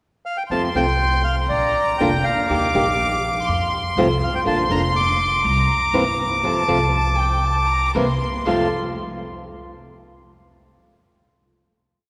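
Nostalgic and passionate, this short tango in F major moves at 121 BPM with a rubato feel, as a reedy, bright bandoneon carries a motif-based melody up front from 0.3 s. From 0.5 s a smooth, floating violin section bowed sul tasto adds a soft-attack counter-melody, while a fingerpicked flamenco guitar plays short chords and a woody, growly pizzicato upright bass plays a sincopa rhythm. The whole piece closes on a final F chord at 8.5 s, bathed in the long, wet reverb of a church.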